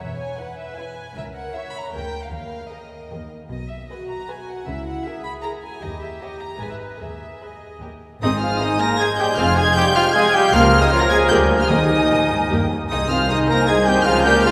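In a straight, quick 3/4 at 154 BPM, this lively, spirited classical-period orchestral passage opens in G# minor with an intimate violin section carrying the melody over a floating viola accompaniment, pure cello and dark double bass sections, and a woody, distant second violin line from 0.4 seconds. It then moves to Ab major at 8.2 seconds, where an airy flute ensemble, a roomy oboe, a dark bassoon, sustained French horn chords and mellow trumpet stabs join, with a mellow clarinet following at 8.6 seconds and very quiet, round timpani entering at 11.7 seconds, all bathed in a church reverb.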